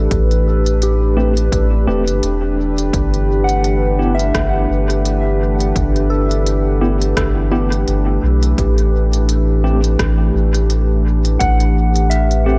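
Meditative and hazy, this ambient dub excerpt moves at 85 BPM in 4/4 with a gentle 16th-note swing, drifting from A7(no3) to G6 at 2.9 seconds and back at 8.6 seconds. A warbling, nostalgic tape-like pad sits up front with detuned sustained chords, chorus and its own built-in reverb, while a deep, round sub bass holds the low end with soft, sustained notes. A soft, pure FM synth bell plays decaying arpeggios through chorus, phaser and a diffuse ambient delay, with a filter sweep running across its whole span. From 1.2 seconds a worn, slightly out-of-tune tine electric piano adds mellow stabs with medium tremolo and dub echo, sounding as if played through a combo amp. Underneath, a punchy, overdriven electronic kick stays in the background beside a small-room drum kit of smooth hi-hats and rim clicks that trail dub echo, all bathed in a dreamy church-like reverb.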